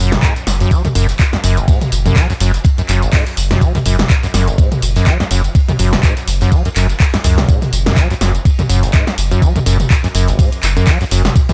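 A squelchy, resonant sawtooth acid riff with a filter sweep, overdrive, chorus and delay opens this hypnotic, gritty acid house passage in F# minor at 124 BPM with swung 16ths, over a deep, round sine sub bass pumping under tube saturation; at 0.1 s a punchy, tape-warm analog drum machine adds handclaps, hi-hat, snare, tambourine and toms, and at 0.2 s a thumpy, up-front sampler-style kick and a very quiet brushed acoustic kit of hi-hat, ride and fat snare join, with small room reverb, in a passage cut from a longer piece.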